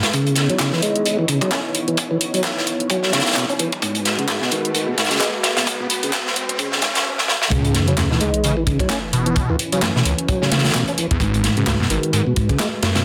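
A crunchy, gritty breakbeat kit sits up front in this swaggering, raw breakbeat excerpt at 130 BPM in C# minor, its swung 16ths joined by overdriven garage handclaps and hi-hats. A fat tonewheel organ riff with fast rotary speaker and dub echo runs through a filter sweep over a moody, sidechain-pumped analog pad, while a background riser builds toward a drum fill and a drop at 7.5 seconds. There a swirling, thick detuned saw bass with phaser enters as the chords move between C#m9 and G#m7 under a dense, heavily limited master.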